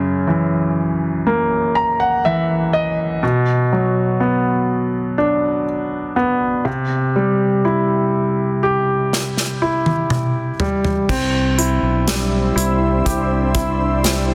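Pop ballad excerpt, emotional and tender, in which a clear, smooth concert grand piano with deep bass carries the chords and plays an early fill, an acoustic drum kit played with bundle sticks and dark cymbals enters with a fill at 9.1 seconds, a punchy fingered electric bass joins at 11.1 seconds as the harmony settles on Cadd9, and a shimmering, ethereal ambient pad with chorus and its own reverb arrives at 11.8 seconds, the whole sitting in a concert hall reverb under a dense, heavily limited modern master.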